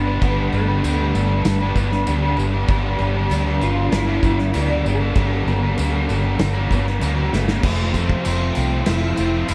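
A dark, round, foam-muted bass sits up front beside a crunchy overdriven guitar riff wrapped in reverse reverb, while a second overdriven guitar with analog chorus, a twangy, slightly broken-up lead melody through a small old amp drifting in ensemble chorus and diffuse delay, very quiet shimmering twelve-string arpeggios, a loose indie drum kit and a jingly background tambourine (both entering at 0.2 s) fill out this brooding, melancholic shoegaze and dream pop fragment, its reverb-soaked hall sound moving from Gadd9 to Fmaj7 after a drum fill at 7.3 seconds.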